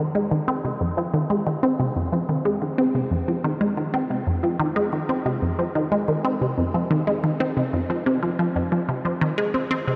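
Ambient excerpt in F minor at 91 BPM in straight 4/4, expansive and mysterious, built from a single resonant blip pluck playing solo for the full ten seconds. The sawtooth pluck is juicy and squelchy, with a fast attack, short decay and a moving notch filter, ranging from F2 to C4 and sitting up front, colored by chorus, phaser and delay. A huge ambient reverb with a 7.6-second tail soaks the dreamy mix, and the tuning sits at A4 = 442 Hz.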